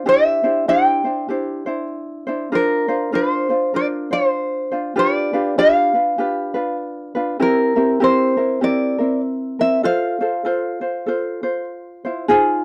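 A bright, fingerpicked tenor ukulele carries the melody over a warm, thumb-plucked ukulele accompaniment from the very start of this relaxed, sunny Hawaiian piece at a swung 98 BPM in F major, moving through Cadd9, Bbadd9, G7 and C7 before settling on F; both light acoustic parts sit up front in a dry, close 1970s-style studio sound with light reverb, and the accompaniment plays on alone from 11.6 to 12.6 seconds in this passage cut from a longer piece.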